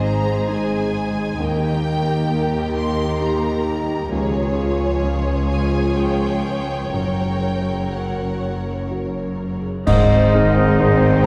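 In a slow, rubato 3/4 at around 60-68 BPM, this tender, hopeful orchestral film cue in Ab major opens with lush, bowed violins carrying the melody over a second violin line, woody violas, a worn baby grand piano with long sustain, ringing harp arpeggios, and a bass of rich cellos and double basses, all set in a wet concert hall reverb. Dark cymbals and concert bass drum arrive at 6.9 seconds as the harmony moves to Gb. At 9.9 seconds the music returns to Ab with an accent, where airy, hollow flutes, a distant clarinet, a soft cor anglais and a very quiet French horn section join for the closing bars of this fragment cut from a longer piece.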